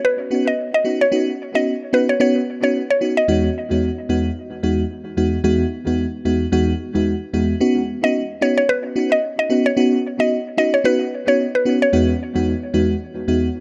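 Afrobeats at 111 BPM in B major with a romantic, joyful glow, this excerpt cut from a longer piece sets a woody, round mallet-like synth pluck carrying the melody from 0.0 to 3.3 seconds and again from 8.0 seconds over a crystalline, sparkling FM electric piano that plays accompaniment until 13.5 seconds, both up front with chorus and analog delay, moving between Badd9 and Emaj7 with a swung sixteenth-note feel inside an echo-heavy mix bathed in moderate plate reverb.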